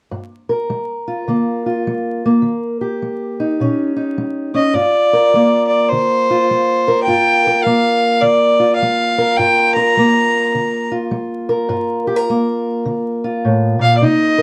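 A fingerpicked steel-string acoustic guitar opens the excerpt at 0.1 seconds, its dark, boxy parlour tone sitting up front as it lays down the accompaniment. This is brooding, smoky acoustic country blues in G minor at 104 BPM in 4/4, with a loping swing on the eighth notes. The guitar moves from Gm7 to Eb7 before returning to Gm7 as the second section begins. At 4.6 seconds a single bowed fiddle enters up front to carry the melody, its nasal, reedy gut-string voice riding above the guitar through to the end at 14.4 seconds. The production is dark and warm, with moderate studio reverb and a layer of vinyl crackle giving the recording an aged, intimate feel.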